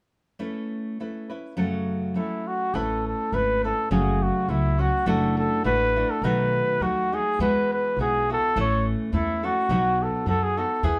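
A mariachi-flavored Mexican folk excerpt in a lilting, lightly swung two-beat feel, festive and proud in mood. A fingerpicked nylon-string guitar opens alone at 0.4 seconds, up front and deep in a classical manner, with audible finger squeaks on the strings. A mellow trumpet takes the melody from 2.2 seconds, playing solo and up front in a classical style with light vibrato and a smooth top. At 2.7 seconds a pizzicato upright bass joins underneath, its gut strings giving a woody, thumpy, dark foundation. The harmony moves through added-ninth chords toward a B7 and a closing push onto B, and the trio sounds like a band playing live together in one room with a wet, short studio ambience.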